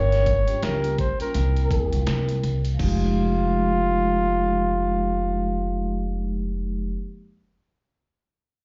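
A breathy flugelhorn leads this mellow, cool jazz-hop fragment, cut from a longer piece, carrying the melody up front with a soft attack, scooped notes and a whispered, intimate tone set off by a slapback echo. Beneath it, a soft-mallet vibraphone rings with a slow motor vibrato and an airy shimmer, while a pizzicato upright bass with steel strings sits up front, woody and growly. The hip hop groove moves at 83 BPM in 4/4 with a lazy swing on the sixteenths, in F minor, and the harmony passes from Gm7b5 to C7 before settling on Fm11 at 2.8 seconds. A dusty, sampler-style drum kit, compressed and gritty with a thumpy kick, medium-tuned snare, hi-hat and crash, sits low in the blend and drops out at 3.0 seconds, leaving the flugelhorn, vibraphone and bass to carry on. The whole take sounds like a live gig heard through a club PA, with light room reverb and a dulled top end that softens every edge.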